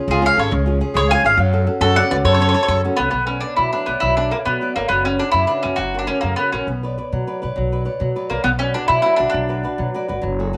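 A round, double-strung mandolin carries the melody up front in this romantic, wistful Italian folk serenade in a lilting 6/8, over fingerpicked flamenco guitar and a thumpy, woody pizzicato upright bass. A dark, reedy accordion adds a smooth second line with slow beating only until 2.8 s, after which the harmony shifts from F# harmonic minor to B harmonic minor at 3.1 s. Moderate spring reverb and a small-room ambience frame this warm, intimate excerpt cut from a longer piece.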